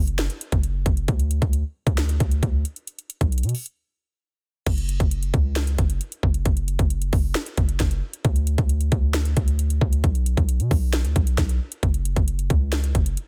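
A deep, boomy 808-style bass, with a sine body, a noise layer and a fast attack that decays, sits up front in this melancholic, eerie hip hop and trap excerpt at 134 BPM in a half-time 4/4 feel, ranging from F#1 to B2. Alongside it, an up-front electronic trap kit brings a hard-clipped kick, sharp snare, metallic hi-hats and crash cymbal, and a break at 3.8 seconds leads into a new section at 4.7 seconds. The sound sits in a digital ambience with a dense, heavily limited modern master.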